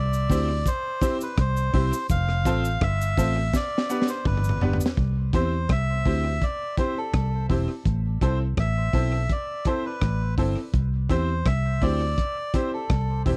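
A straight 4/4 groove at 83 BPM carries this laid-back roots reggae piece in C major: a gritty breakbeat kit with a high-tuned snare, tight kick, rim clicks and toms, whose fill from 3.5 to 5.0 s leads into the next section, sits under a round, foam-muted electric bass that stays up front. A bright, slightly detuned upright piano adds woody stabs over chords moving from C through F, G and Am. A reedy, breathy melodica with tube saturation and tape echo carries the melody, while a cabasa in the background plays until 5.0 s, all in a dry, close 1970s-style studio sound.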